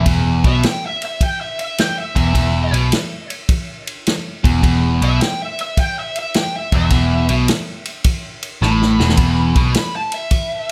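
Lightly reverberant and gritty, this smoky blues rock and southern rock clip has a swung feel, with a wah-soaked, overdriven lead guitar soloing high over a biting, bright, double-tracked riff guitar sitting up front. A dark, round, foam-muted bass anchors the low end, and a natural-sounding vintage kit with a punchy kick, ride cymbal and medium-tuned snare plays in a small room, adding a fill at 8.6 seconds. The riff guitar and bass drop out at 9.7 seconds, leaving the lead and drums to carry on briefly.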